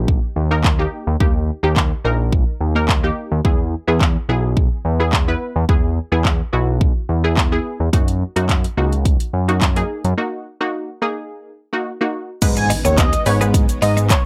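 Dance-pop in G# minor at 107 BPM, confident and driving, this short cut pairs a punchy, tape-warm electronic drum kit with metallic hats and a fat, nasal sawtooth bass, both up front, under detuned chord stabs with chorus and sidechain pumping through D#, E and F#6. A break at 10.2 seconds gives way to a drop at 12.4 seconds over G#m. At 12.6 seconds a bold, retro octave-doubled lead with vibrato and digital delay, a bright, twangy twelve-string electric guitar in the background and a very quiet impact arrive, with a hollow group handclap joining at 13.0 seconds, all fairly dry.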